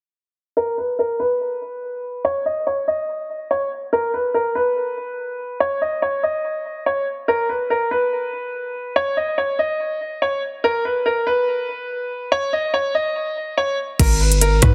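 A half-time drill pulse in 4/4 frames this cold, dark hip hop piece, cut from a longer track. For most of its length a bright, woody upright piano carries the melody alone in a narrow upper-middle range, run through a low-pass filter and digital delay, with a filter sweep shaping it from 0.6 to 14.0 seconds. At 14.0 seconds the beat drops in: an electronic drill kit with a knocking kick, crisp hi-hats, rim clicks and a crash cymbal, joined by a punchy, heavy 808-style bass with a sine body, a noise layer, a fast attack and a decaying tail. The piano, drums and 808 all sit up front, though the drums and bass hit harder than the piano. Light reverb and digital ambience surround the parts, and the master is dense and heavily limited.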